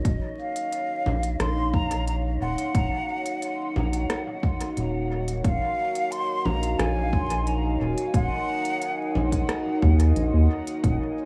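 A breathy, mellow silver concert flute carries the melody through dub echo from 0.4 to 9.4 seconds in this deep, hazy ambient dub excerpt in Eb minor at 89 BPM, resting on a single Ebm7 chord held by a dark, wave-folded pad with chorus, a round analog bass with tube saturation, a punchy overdriven electronic kick and a smooth, tape-toned electronic kit of congas, hi-hat and rim click in dub echo, all set in an echo-heavy mix with vinyl crackle and small room ambience.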